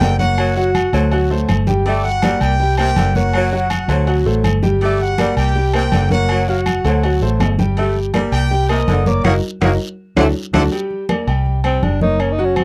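Danceable and driving, this salsa excerpt in G harmonic minor moves at 162 BPM, with a punchy, tight trumpet section carrying the melody over a clear saxophone section's second line, brilliant baby grand piano accompaniment with long sustain, and a dark, round, foam-muted fingered electric bass up front. Thin-skinned congas sit in the background with raspy guiro, while ringing metal-shell timbales and agogo bells and very quiet woody claves complete the percussion in a dry, close 1970s-style studio sound. After a band accent and drum fill, the horns and guiro drop out at 10.6 seconds, and a breathy, whispered tenor saxophone takes an intimate solo from 11.7 seconds.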